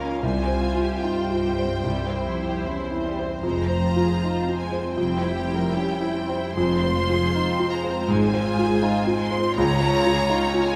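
Classical romantic movement for piano and orchestra, passionate and brooding with rubato phrasing, where an up-front, clear grand piano with audible action noise and long sustain carries the melody alongside a close, rich violin section soaring above, while a lush, smooth-topped second violin line and background violas, cellos and double basses supply bowed, vibrato-laden accompaniment and bass, the cellos and basses sounding from 0.2 to 10.2 s within a wet recital-hall reverb.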